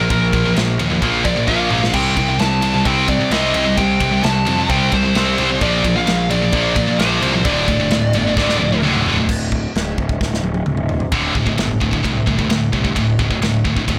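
Heavy metal in D minor at 131 BPM, dark and aggressive and cut from a longer piece: a scooped, up-front high-gain guitar and a second heavy, bright distorted guitar drive the riff over a growly fuzz bass and a polished, airy studio drum kit with china, crash and ride cymbals, toms, a tight kick and a medium-tuned snare. A dark high-gain lead guitar with digital delay carries the melody until 8.8 s, and drum fills land around 1.5 s and in a chordless stretch that ends at 11.1 s. The recording has little reverb and sounds blown-out and overdriven.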